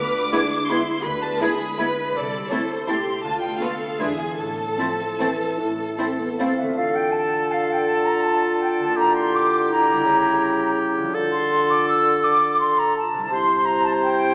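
Dark and sweeping, this fragment of an orchestral ballroom waltz in 3/4 moves with a rubato sway: an up-front chamber violin section sings the vibrato-rich melody over bright, ringing harp arpeggios, with cellos gliding in portamento and a lush double bass section low in the background. A background studio violin section, a pure-toned flute group, a warm clarinet, a distant viola section and soft-attack French horns holding dark sustained chords fill out the texture, until the strings fall away between about 6 and 6.5 s and the horns by 6.8 s. From 6.8 s a clear, present oboe and a shadowy bassoon join the harp, flutes and clarinet, all in a reverberant scoring-stage space heard through a small-speaker sound.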